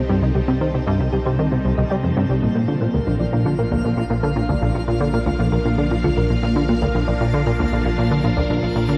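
Ambient, sequencer-driven space music at 116 BPM in 4/4, this cosmic, hypnotic excerpt drifts between Cm and Bb over nine seconds. A punchy, funky analog bass riff sits up front, its wave-folded sawtooth and square tones shaped by a filter pluck and fast attack and treated with analog chorus and delay. Beneath it, a deep sine sub bass holds a mellow, sustained foundation, while a swirling, vintage string machine carries bright sustained chords through ensemble chorus and phaser. A tine-like, FM thumb-piano pluck plays gentle arpeggios in the background from 0.1 seconds, its dark tone roughened by 12-bit sampler grit and echoed with delay. Above everything floats a sparkling granular texture with an octave-up shimmer and long release, the whole mix bathed in a huge ambient reverb.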